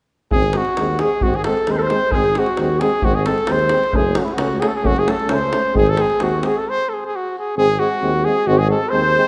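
A cornet leads up front with a classical-style melody in this virtuosic, restless Balkan brass band fragment at 132 BPM in 2/4, with a distant, roomy clarinet on the second line, a clear trombone and a punchy euphonium with light vibrato accompanying in the background, a mellow tuba on bass, and a deep, saturated davul. The band moves over G#, F#m and G# chords until the davul drops out at 6.5 seconds, then breaks off from 6.7 to 7.6 seconds and returns, all in a moderate concert hall reverb.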